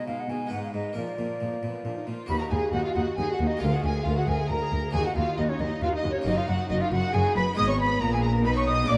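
A dark, reverberant scoring-stage sound frames this dramatic, driving baroque-style concerto excerpt in Eb minor at 136 BPM in 3/4, where a pure, straight-toned concert flute carries the melody over a focused chamber violin section, a distant second violin line, an airy, bright harpsichord, background violas and smooth bowed cellos, with a double bass section entering at 2.3 s to deepen the bass.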